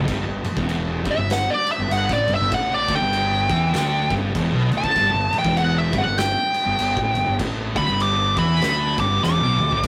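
Brooding and ominous, this swung stoner and doom metal excerpt at 98 BPM sets two thick fuzz guitars riffing low, one very quiet and dark, the other distorted in the background, over a growly, brilliant overdriven fingered bass and an oversized low-tuned drum kit with a boomy kick, fat snare, toms and dark crash cymbals in a pumping big room, while a dark, up-front fuzz lead guitar with wah and distortion solos high from 1.1 seconds and a drum fill arrives at 9.2 seconds, all captured as a rough, saturated rehearsal-room recording with light reverb.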